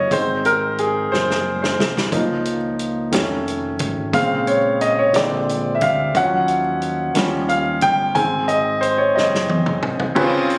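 Captured on a phone in a room with light club reverb, this slow, soulful and hopeful gospel fragment in 6/8 at 60 BPM features an intimate, up-front concert grand piano, clear and natural with deep bass and audible action noise, playing a solo over chords that move from Ab through F7alt and Ebm7 back to Ab, supported by a punchy fingered electric bass with an envelope filter and a dry, mid-forward soul drum kit with a tight kick and rolled-off top that adds fills at 1.1 and 9.2 seconds.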